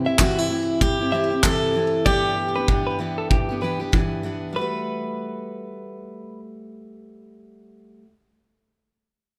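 Carefree and easy-going, this short acoustic pop excerpt with a swung 16th-note feel sets full-bodied picked dreadnought guitars up front, one playing accompaniment over C, Em7 and Gmaj9 while the other carries a delayed melody until 3.9 seconds, as a clean, compressed direct-recorded electric guitar spins arpeggios and a loose, small-room drum kit with a tight kick and handclaps pumps along until 4.1 seconds, all in light reverb.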